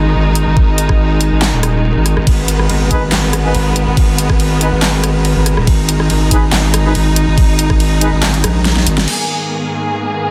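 A dense, heavily limited modern master with light digital ambience frames this aggressive, menacing cut of heavy wobble dubstep at 141 BPM in half-time, in G# minor, opening straight on a drop. An up-front, saturated square-and-sine wobble bass with chorus and overdrive sits beneath a lush, distant bowed string section holding sustained chords through sidechain pumping and a low-pass filter, while a knocking electronic kick and a layered kit with a huge snare, handclaps, hi-hat, ride, rim clicks and crash share overdrive and a small room reverb. Smooth classical-style brass stabs sit in the background with dub echo from 2.9 seconds, and a drum fill at 8.7 seconds leads into a band accent before the strings alone carry a G#madd9 chord from 9.2 seconds to the end.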